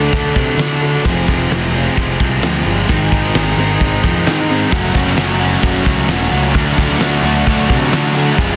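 A bright, overdriven electric guitar riff sits up front in this angsty, cathartic quiet-loud alternative rock excerpt at 131 BPM, driven by a warm fuzz bass and a loose indie drum kit with a fat snare, punchy kick and pumping room sound, while a full-bodied steel-string acoustic guitar plays delayed arpeggios with finger squeak in the background until 4.7 s, when a hollow-body guitar enters with a second riff over chords moving from D through Fm, G# and F#m back to D in a dense, heavily limited small-room mix.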